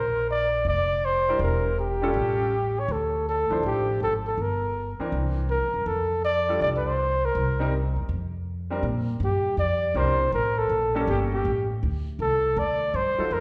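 A mellow, vibrato-laden flugelhorn carries the melody up front over a woody, thumpy pizzicato upright bass, with a clear baby grand piano entering at 1.3 s to comp through chords such as Bb, Em7b5, A7b13 and Dm9, in a relaxed small-group swing and bop excerpt at 161 BPM that sits in the lingering reverb of a recital hall.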